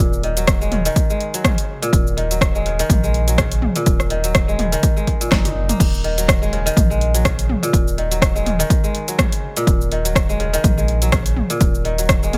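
Dry, this excerpt of afro house moves at a hypnotic, driving 124 BPM in Eb minor with a swung sixteenth feel. A crisp, ringing fingerpicked kora plays low-passed arpeggios with dub echo and sidechain pumping over a round, sine-like sub bass that also pumps on a sustained Ebm7. An up-front deep house kit with a fat snare, hi-hat, shaker, rim click, toms and crash cymbal is joined at 0.5 s by a punchy electronic kick, both drum parts overdriven, with a drum fill at 5.3 s.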